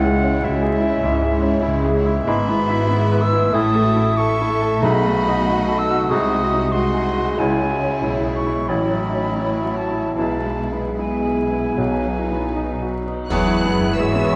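Lyrical and lush, this romantic movement for piano and orchestra moves with an elastic rubato, cut from a longer piece. The clear baby grand piano carries the melody up front, its intimate tone showing audible action noise and long sustain, while a warm violin section shares the tune in the background with vibrato and expressive portamento. A bright silver flute, a clear clarinet and a second, richer violin section weave supporting lines, as a very quiet, woody viola section and a mellow bassoon fill the accompaniment beneath soft, distant French horn chords. Smooth cellos and focused double basses anchor the bass, and very quiet, dry timpani strokes land around 4.8 and 11.8 seconds. From 10.2 seconds a cymbal swell, bright clash cymbals and concert bass drum sound ahead of a band accent at 13.3 seconds, where a dark, punchy trombone section joins on the arrival at E. Moderate concert hall reverb and a dark production touched with vinyl crackle give the sound an aged, enveloping glow.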